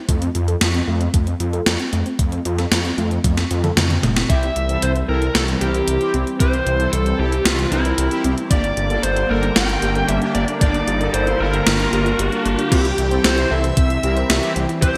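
Uplifting and romantic, this synthwave excerpt in C mixolydian moves at 114 BPM in a straight 4/4, opening on a soft, round pluck arpeggio shaped by a filter sweep, with a thick detuned saw bass pumping against a thumpy, tape-toned electronic kick and an up-front gated 80s drum machine whose snare, hi-hats, toms and crash close the intro with a fill. At 4.3 seconds a dark, distorted lead guitar takes the melody through digital delay, joined by a swirling phased analog pad and bold, brassy synth stabs, while a riser builds in the background until 12.7 seconds, when a shimmering string-machine violin line enters high above. The mix sits in a lush hall reverb with a bright 1980s-style digital sheen.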